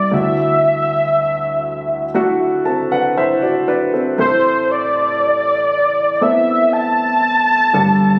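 Emotional and tender, this slow pop fragment at 59 BPM in 4/4 features a velvety, full-bodied synth lead singing the melody up front. The lead is built from detuned unison sawtooth and triangle tones, shaded with chorus, tape echo, vibrato and a filter sweep, over a dark, mellow baby grand piano whose fill from 2.1 to 4.2 seconds leads into a change from Dadd9 to Amadd9 at 4.2 seconds. A moderate plate reverb and compression shape the sound, which was captured on a phone in the room.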